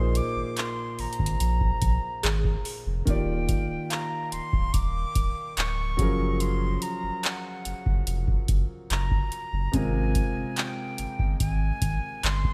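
A distant, airy silver concert flute melody with delay opens over clear grand piano accompaniment and a round, mellow sub bass, alongside a soft FM synth bell in the background treated with chorus, phaser and delay until 6.3 seconds, while a booming analog drum machine with a deep kick, metallic hi-hats and handclaps sits up front from 0.2 seconds in this tender, romantic contemporary R&B excerpt that moves from Bb7sus4 through Ebmaj7 and Gbmaj7 to Ab6 under light reverb.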